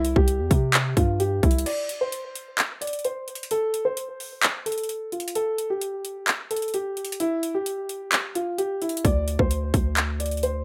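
Trap-style hip hop in D minor at 130 BPM with a half-time feel, this short passage cut from a longer piece carries a melancholic, eerie mood. A dark baby grand piano carries the melody throughout, sitting up front with a mellow, intimate, vintage tone, its action noise audible and its notes trailing into a delay. A trap drum kit of kick, hi-hat, handclaps and crash cymbal drives the track, sounding electronic and produced, with a hard-clipped kick, metallic hats and an overdriven edge. A deep, sine-like 808-style bass with a fast attack and long decay anchors the opening over a C chord, then drops away at 1.7 seconds for a break with the harmony suspended, returning at 9.0 seconds under a D7 chord. The rough home demo mix carries a light reverb.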